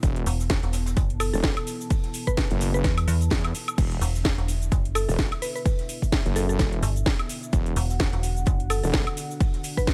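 A dark analog pad, a wobbling bass and a punchy, up-front electronic kick open this swaggering, bouncy bass house excerpt together at 128 BPM, over an E5 chord and a 16th-note swing. The wobble bass is heavy and saturated, its detuned sawtooth core thickened with chorus and overdrive, and it pumps with sidechain compression alongside a metallic, digital FM bass that enters at 0.3 seconds with tube-saturated grit. A layered house kit adds a cracking snare, metallic hats, cabasa, woodblock and crash cymbal, tape-tinged as if re-recorded in a small room, while a very quiet acoustic jazz kit sits far beneath with a smooth, medium-tuned snare and hi-hat. From 1.2 seconds a woody, round, mallet-like pluck carries a short melody between A4 and B4, softened by chorus and tape echo. The moody, sub-octave pad stays low in the mix with a slow attack and its own sidechain pumping, and the whole mix is dry and close, with little reverb.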